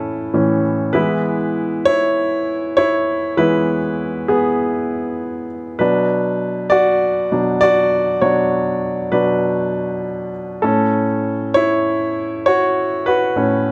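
Pop solo piano excerpt at 99 BPM in straight 4/4, anthemic and hopeful, with a clear, polished baby grand up front spanning A2 to D5 through Aadd9, E, Bm and F#m/A over 13.7 seconds in a moderate large-studio reverb.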